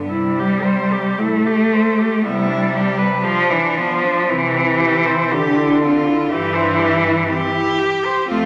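Bathed in a wet recital-hall reverb, this serene classical passage for cello ensemble, cut from a longer piece, unfolds in free rubato as a rich, close cello sings the smooth melody over an up-front dark cello accompaniment with expressive portamento, a clear cello second line and a distant bass cello that also slides between notes, all four bowed with vibrato.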